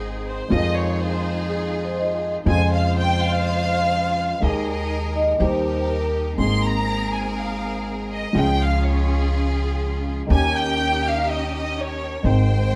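A rubato 4/4 tango sway gives this tense, sultry passage from a longer piece its pull, with a dark, mellow upright piano carrying the accompaniment, thumpy pizzicato upright bass underneath, and a bowed studio string section adding focused, smooth-topped stabs. From 0.3 seconds a chamber violin section takes the lead, its expressive vibrato, soft attack and portamento glides sitting up front. Between 1.5 and 6.2 seconds a metallic, ringing vibraphone struck with medium hard mallets traces a vintage-tinged second line, all within a light reverb.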